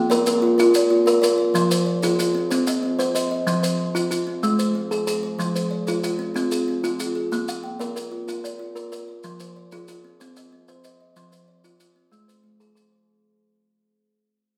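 A kalimba with a woody, hollow-box tone sits up front, its thumbnail plucks ringing through arpeggios that span F3 to F5 with a vintage, band-limited character. A second kalimba, brighter and also ringing, runs alongside it from 0.0 to 13.2 seconds, and together they weave an mbira-style interlocking cycle in the southern African traditional style. Maracas add a grainy, mellow shake from 0.1 to 12.9 seconds, heard close and dry against the moderate reverb of a large studio room where the band plays live. The rippling, warm mood rests on a 12/8 metre at 125 BPM counted in dotted quarters, with a straight feel in F equiheptatonic, tuned to A4 = 440 Hz. The harmony circles through Bb, Fm, Cm, F5 and Ab. This short piece is cut from a longer one, and a fade-out runs across its full length to 13.1 seconds.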